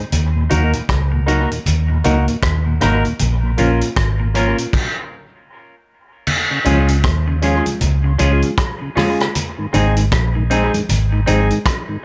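The rhythm rolls in 4/4 with lightly swung sixteenths, setting a warm, uplifting roots reggae groove cut from a longer piece. Up front, a vintage drum kit with a punchy kick, dark cymbals, hi-hat, rim clicks and a crash sits in a studio room sound with a rolled-off top and dub echo. Beside it, a foam-muted fingered electric bass sounds round and amped, while very quiet congas with thick skins and hard hands add a live-room patter. Clean, twangy electric guitar with subtle chorus and tape echo shares the accompaniment with a woody, smooth upright piano playing stabs. Beneath them, a mellow tonewheel organ turns slowly through its rotary speaker in the background. After a stop from 4.7 to 6.3 seconds, the harmony moves from minor chords into brighter major ones for the second section, all framed in a light reverb.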